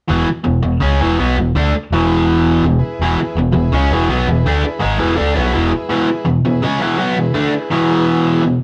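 Rowdy and raw, this short rock excerpt is driven by a biting, double-tracked overdriven guitar riff up front, backed by a dark, round picked bass that drops out at 5.7 seconds, while a buzzy vintage combo organ with light vibrato enters at 2.8 seconds to hold sustained chords in the background, all captured as a band playing live in one room with moderate reverb and a dulled top end.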